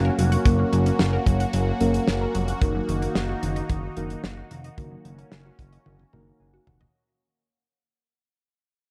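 Muted, felt-like synth keys with chorus open this nocturnal, melancholic synth-pop excerpt alongside a swirling, phased analog pad, a lush detuned unison pluck playing arpeggios through phaser and analog delay, and a smooth, wave-folded synth bass sitting up front, all moving from Gb to Ebm. A damped 70s drum kit with a fat snare, tight kick and rolled-off top joins at 0.2 seconds, and both the drums and the keys play a fill from 5.9 seconds as the whole passage fades out. The dark production is set in a lush hall reverb blended with a small room.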